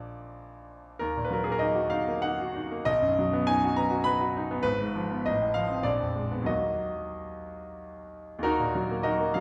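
Classical romantic character piece for solo piano in Eb minor, passionate and brooding, moving in a rubato 3/4 at roughly 90-103 BPM, where a brilliant, natural-toned grand piano sits up front across a span from Ab1 to B5, its chords passing from Bb through Ebm and B to Fdim/Ab, F7/A and Bb7b9 before settling back onto Ebm at 6.5 seconds, all bathed in a wet recital hall reverb heard from further back in the room with softened highs, in a brief fragment cut from a longer work.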